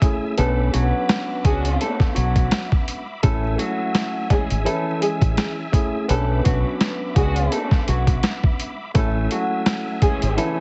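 Boom-bap hip-hop with a confident, nostalgic mood, cut from a longer piece and moving at an easy swung stride. Up front, a gritty, pitched-down sampler-style kit pairs a thumpy kick with a high-tuned snare and hi-hat, while a deep dub fingered electric bass, round and punchy, joins at 0.4 seconds. Underneath, a worn, slightly out-of-tune tine electric piano plays overdriven accompaniment with cassette-tape colour, and a reedy tonewheel organ holds sustained chords high above through a fast rotary speaker and chorus vibrato. A fingerpicked nylon-string guitar carries the melody from 0.4 seconds, its finger squeaks audible and its lines trailed by tape echo, and a dark, woody string section adds lush bowed stabs from 1.4 seconds. The harmony rocks between Bm9 and Amaj7, and the whole mix sits dry and heavily compressed, with a dulled, radio-like top and a bed of vinyl crackle.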